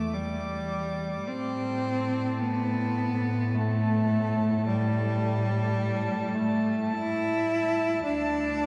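A single bright, biting cello carries the melody, bowed with light vibrato and an intense edge that sounds distant despite sitting up front, with delay trailing its lines in this slow, spacious ambient fragment in A minor at 53 BPM in 3/4. Beneath it, a dark, woody studio cello section holds the bass close, while a glassy texture of drifting overtones hovers high and calm, softened by chorus and its own reverb. The harmony opens on Em7, shifts at 1.3 s, and settles on D5 at 8.0 s, all bathed in a huge, wet reverb and a dark, reflective production.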